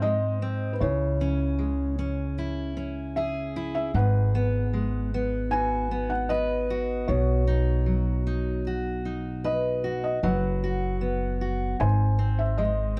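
This short excerpt of an acoustic folk-pop ballad opens with felt-muted upright piano, fingerpicked steel-string acoustic guitar and upright bass all sounding together from the first moment, in a heartbroken, reflective mood. At a slow 76 BPM in straight 4/4 and G# minor, the piano carries the melody with a soft, mellow, vintage tone and an intimate touch, its thick felt sitting in a plate reverb. The full-bodied dreadnought guitar supplies close, up-front fingerpicked accompaniment, while the pizzicato upright bass adds a woody, thumpy low end. The harmony moves from G# through C#m, G#m7, Badd9 and F#sus4 before settling back on G# at 11.8 seconds. Light reverb and a dark, warm production give the 13-second passage a hushed, inward feel.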